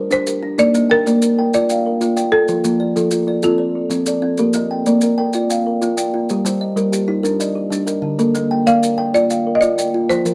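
A woody, rustic folk marimba struck with medium hard mallets carries the melody up front, sitting in plate reverb and dropping out after 4.0 seconds before returning at 8.7 seconds. Beneath it, two kalimbas weave arpeggios through the whole piece in an mbira-style interlocking cycle of Southern African traditional music, their fingertip plucks sounding hollow and ringing, with the louder one carrying a vintage, band-limited tone. Grainy maracas sit close and dry at a low level, adding a pulse to the 12/8 metre at 126 BPM in dotted quarters. The harmony in Bb major moves from Gm through Bb and F and back, giving the short cut from a longer piece a hypnotic, rippling mood. The production is dark and warm, with light reverb around the ensemble.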